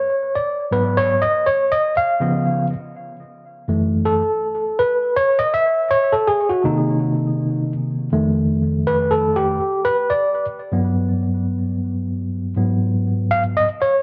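Hip hop with a cool, nocturnal mood, built on a solo tine electric piano that sounds worn and slightly out of tune, lightly overdriven and up front, as if heard through built-in speakers, with cassette tape coloring and an analog delay trailing its notes. The piece moves at a relaxed swung pace through jazzy seventh chords such as G#m7, C#7, F#m7 and Gmaj7, with its phrase restating from 3.7 seconds. A moderate spring reverb and the character of a home cassette recording give this short excerpt a hazy, late-night intimacy.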